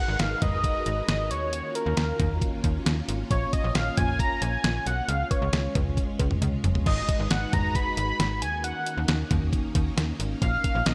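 A straight, driving 4/4 pulse comes from a detuned 8-bit digital drum machine that enters at 0.2 seconds, with a thumpy kick, medium-tuned snare, hi-hat, cowbell, toms and crash cymbal sitting up front, plus a short fill around 6.4 seconds. Beneath it, a slap-like FM bass with a snappy, metallic attack and decaying notes holds the low end. A string machine voiced as violins lays down sustained chords with a slow attack, its vintage sawtooth tone shimmering through an ensemble chorus. On top, a bold, octave-doubled sawtooth lead carries the melody with vibrato, chorus and digital delay, full-bodied yet mellow. The harmony moves through G#m7, D#m7, A#m and C# in a cool synth-pop mood, cut from a longer piece and bathed in a lush hall reverb with bright 1980s-style digital production.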